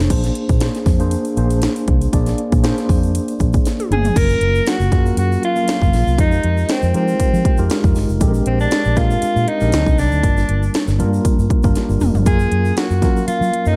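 Urban and bittersweet, this polished 1980s jazz-funk pop passage, cut from a longer piece, moves with a lightly swung sixteenth-note feel in 4/4. A mellow tine electric piano, clean and touched with subtle chorus, lays down chords such as Bb9, Gbmaj7 and Fm11, while a dark, foam-muted fingered electric bass gives a round, punchy, amped foundation. The electronic house drum kit sits up front, with a punchy kick, cracking snare and metallic hats. A grainy, bright egg shaker sits far back in a large room. During a drum fill that begins at 3.7 s, a soprano saxophone enters at 3.9 s to carry the melody in a jazz-style solo with light vibrato, roomy yet up front in the balance. Another drum fill at 11.8 s leads back to Gbmaj7, all wrapped in a light reverb and a warm, shadowy production.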